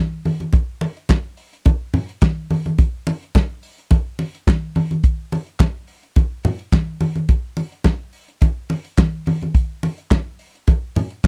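A straight 4/4 disco groove at 106 BPM drives this short, glamorous and celebratory passage cut from a longer piece. A soul drum kit enters at 0.2 seconds with kick drum, snare drum, hi-hat and handclaps, its sound dark and smooth, with a punchy kick and a medium-tuned snare sitting up front. Congas join at 0.3 seconds, low-tuned yet bright, with a thin-skinned, hard-handed attack placed close in the mix beneath the kit. Both parts carry on together through a single section until the cut at 11.3 seconds. The dry, close 1970s-style studio sound, with little reverb and the feel of a small room, keeps the percussion tight and immediate.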